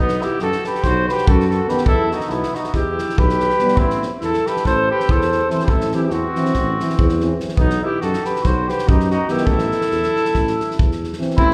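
A fiery, bittersweet Balkan brass band excerpt in a straight 9/8 opens with a soft-attacked, roomy flugelhorn carrying the melody up front over a mellow trumpet second line, a tuba bass with light vibrato and a loose acoustic drum kit of tight kick and medium-tuned snare, while from 1.7 seconds two euphoniums, one close-miked and one punchy, add background accompaniment through chords moving from B5 through Em and Am to B and A5, all bathed in the wet reverb of a recital hall.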